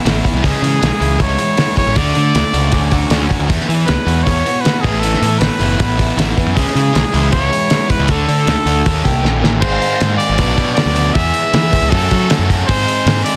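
A clear trumpet with light vibrato and plate reverb carries the melody over a jangly, wistful indie rock groove at 157 BPM, where a fuzzy, overdriven picked electric bass and a muffled, cloth-damped drum kit with a fat snare and dark cymbals sit up front, a biting overdriven guitar and an overdriven electric guitar with subtle chorus play riffs in the background, and a drum fill at 9.2 seconds leads into a new chord passage at 9.6 seconds.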